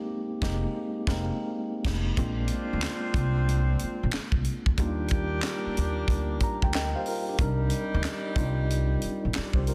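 A mellow tine electric piano opens this smooth, late-night neo-soul R&B excerpt at 92 BPM with a swung 16th feel. It is soon joined by a woody, thumpy pizzicato upright bass sitting up front and a tight funk drum kit with a high-tuned, softly clipped snare, crash, handclaps and hi-hat. A dark, tightly played jazz saxophone section enters with stabs at 2.2 seconds, and the electric piano adds a fill at 6.1 seconds. The harmony moves through Fm11, Bb9, Ebmaj9 and Cm9 chords in a small room with a dense, heavily limited modern master.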